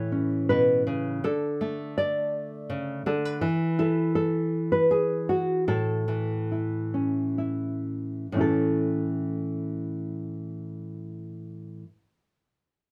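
Folk fingerstyle played on a solo nylon-string guitar, this peaceful, pastoral excerpt from a longer piece drifts in a rubato 3/4 between 62 and 83 BPM in A major. The guitar sits up front with a dark, full-bodied, thumb-plucked classical tone, moving from Aadd9 to D5 and easing into a slowdown between 3.4 and 8.3 seconds before settling on A. A moderate studio ambience gives the playing a gentle sense of room.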